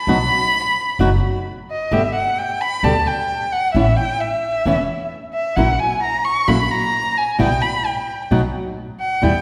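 Nostalgic and elegant, this rubato tango fragment features an expressive bowed violin up front, its vibrato, portamento and soft attack carrying a solo over a fingerpicked flamenco guitar with fresh strings and a woody pizzicato upright bass, as the chords move from B through G, Aadd9 and F#7/A# to Em/B and B5, the whole bathed in the wet reverb of a concert hall.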